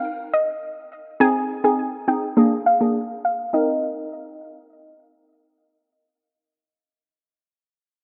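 A straight 4/4 dancehall feel at 103 BPM in C minor carries this sultry, hypnotic fragment, cut from a longer piece. A soft, round pluck with chorus and delay carries the high melody from 0.3 seconds, and a glassy, crystalline wavetable pluck enters at 1.2 seconds with a filter sweep and chorus, supplying accompaniment as the harmony moves from Ab through Bb7 to Cm7. Both plucks sit up front in a dark production bathed in lush hall reverb.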